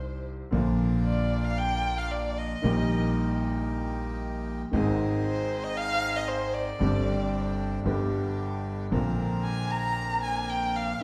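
Dramatic and sultry, this brief tango excerpt moves at 114 BPM in 4/4 with a rubato feel, as a dark bowed violin carries a solo throughout, up front and expressive with vibrato and portamento. A clear, boxy baby grand piano accompanies over a woody, thumpy pizzicato upright bass, while a reedy, close-miked bandoneon adds dry, full stabs from 0.5 seconds. The harmony moves from Cm through Bb, Eb/Bb, Ab and Gsus4 to G before settling on Bbadd9, all set in a wet large-studio reverb that places the listener further back in the room.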